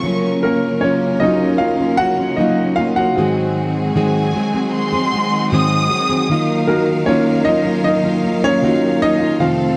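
A straight 4/4 pulse at 77 BPM carries this longing, emotional pop ballad excerpt, where a clear concert grand piano with deep bass and short sustain leads up front as a solo over fingerpicked arpeggios from a woody, full-bodied plugged-in steel-string acoustic guitar with old strings, lush bowed sustained chords from a symphonic string section, and a focused chamber violin section with a smooth top and digital delay that plays a second line until 6.5 seconds, all moving through Gbmaj7, Ab7 and Ebmadd9 in a dark production with light reverb and small room ambience.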